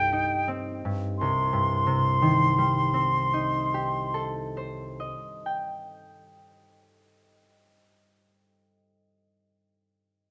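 Rubato in 4/4 at a slow 44 BPM, this mysterious, wistful impressionist duo for flute and harp in C dorian (tuned to A4 = 441 Hz) slows down in its opening 1.2 seconds over a Cm6 chord. Up front, a silver concert flute sings the melody between G5 and C6 with an airy, metallic tone, vibrato and a crisp attack until 4.3 s. The fingerpicked concert harp accompanies from C2 to G5 with ringing, acoustic strings, carrying on alone until 8.1 s in a wet recital hall reverb, a short fragment cut from a longer piece.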